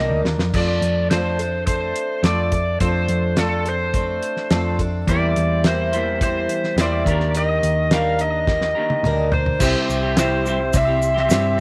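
A straight, steady four-beat groove sets this jangly folk and heartland rock passage in motion, with a damped 70s drum kit coming in at 0.3 seconds, its fat snare, tight kick and rolled-off top sitting dry and up front alongside hi-hat, toms and crash, and fills marking both the opening and the lead-in to the second section. An overdriven slide guitar carries the melody in a bright, up-front voice, while a picked twelve-string acoustic guitar supplies boxy, woody, octave-doubled accompaniment that shimmers despite its old strings. Underneath, a hollow-body short-scale electric bass plays a round, amped, dark line close in the mix. At 5.1 seconds a clean semi-hollow electric guitar adds a picked riff as the harmony moves from major-seventh and sixth colours toward a dominant chord. When the second section begins at 9.6 seconds, a mellow, flute-like tonewheel organ holds soft sustained chords in the background with chorus vibrato and key click, joined by a very quiet, reedy, barky electric piano with gritty overdrive and fast tremolo, plus a grainy, vintage tube shaker. 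Light studio reverb gives the whole band a touch of shared space.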